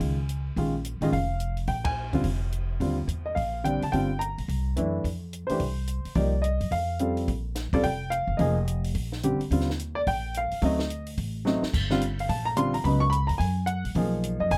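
Jazz piano trio in a relaxed, playful mood, moving at a brisk tempo with a light swing feel in 4/4. The baby grand piano carries the melody up front, with an intimate, natural tone, short sustain and audible action noise. The pizzicato upright bass, also up front, gives a woody, steel-strung bottom line. A compact cocktail drum kit, recorded naturally in a tight booth, adds dark cymbals on crash, ride and hi-hat, a high-tuned snare and a tight kick. The band hits an accent together at 1.8 s, the second section begins at 7.3 s, and a drum fill arrives at 11.5 s, all in a dry room with little reverb, cut from a longer performance.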